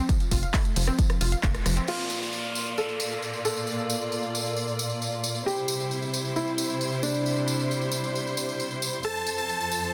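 Drenched in a huge ambient reverb and pressed into a dense, heavily limited modern master, this soaring, euphoric uplifting trance excerpt opens with a detuned sawtooth unison pluck spinning pumping, delayed arpeggios over a layered, punchy electronic kick, a tape-toned analog drum machine of crash, claps, hi-hats and rim clicks, a jingly acoustic tambourine and a tight, driving sequencer bass. At 1.9 s the drums and bass fall away, leaving the tambourine under a clear, focused, bowed string section holding close, vibrato-rich chords, a soft felt-muted upright piano with audible action noise, 12-bit sampler grit and delay adding a second line, and an electronic downlifter sinking beneath them. At 9.0 s huge, bright supersaw chords arrive up front with the melody, while a catchy plucky unison lead sits high in the background.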